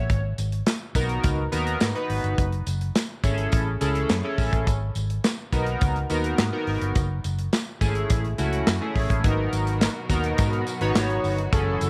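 A straight 4/4 groove at 105 BPM drives this slick, danceable slice of early-eighties boogie funk, cut from a longer piece and set in a light studio reverb. Up front, a punchy kick and medium-tuned snare from an acoustic studio drum kit join hi-hat and handclaps from 0.1 seconds, with a jingly tambourine sitting in the background. A dark, round, foam-muted fingered electric bass carries the low end, while a glossy, retro chorused polysynth, built from pulse, sawtooth and square waves with a sub octave and a filter sweep, holds sustained chords near the front of the mix. The harmony alternates between G#m9 and F#m9 every couple of seconds. At 9.2 seconds a lush, distant string section enters with bowed, vibrato-laden sustained chords, adding a clear, focused sheen behind the groove.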